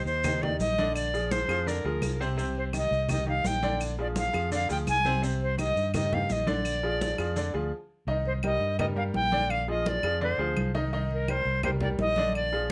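A bright, airy silver concert flute carries the melody from 0.0 seconds, up front with a reedy, tongued tone, vibrato and softened highs, over a clear concert grand piano accompaniment with deep bass and short sustain. This passionate, fiery salsa excerpt in C minor moves at a brisk 168 BPM in straight 4/4, with the harmony alternating between Cm9 and Bb7. A dark, round, punchy fingered electric bass sits up front in its low register. Behind it, ringing medium-tuned congas played with hard hands and woody, close, dry claves drive the rhythm, while grainy, mellow maracas sound from a distant large room until 7.5 seconds. After a brief stop, the same section returns at 8.1 seconds with the flute, piano, bass, congas and claves, all set in moderate studio reverb.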